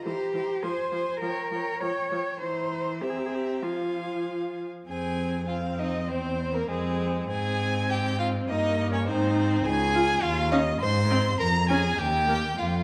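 In a lively 2/4 at 101 BPM, played with a supple rubato, this quick classical-period movement for string quartet sets a graceful mood in F minor. This is a brief cut from a longer piece. The first violin carries the melody with focused, vibrato-laden bowing that sounds somewhat distant, while the second violin plays a smooth-topped second line. The viola fills in the accompaniment with a soft attack, expressive portamento and a faraway quality, and the cello sits up front on the bass, equally expressive with its gentle slides, all four sharing a rich, single-player string tone. After opening around dominant and diminished colours that settle onto F minor, a second passage from about 4.9 seconds turns toward the brighter major harmonies of Ab, Db and Eb. A recital hall reverb with a 1.5-second tail surrounds the ensemble in a dark, mellow production.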